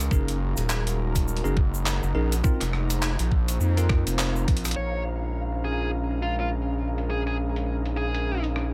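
Lightly reverberant, this swaggering, gritty glitch hop excerpt swings over a saturated square-and-sawtooth synth bass and a knocking, tape-toned electronic kick, joined by a compressed boom bap sampler-style kit of handclaps, low-pass-filtered hi-hat and rim click re-recorded in a large room. A bell-like tine electric piano plays bright, clean stabs with delay, while a moody analog pad, colored by chorus, phaser and vintage 12-bit sampler crunch, and an ethereal, detuned airy pad with tremolo sit in the background, both pumping with the sidechain alongside a close, dry egg shaker. After a drum fill at 4.5 seconds, the piano, shaker and kick drop out, and a dark, distorted bluesy lead guitar takes the melody from 4.8 seconds as a filter sweeps across the drums.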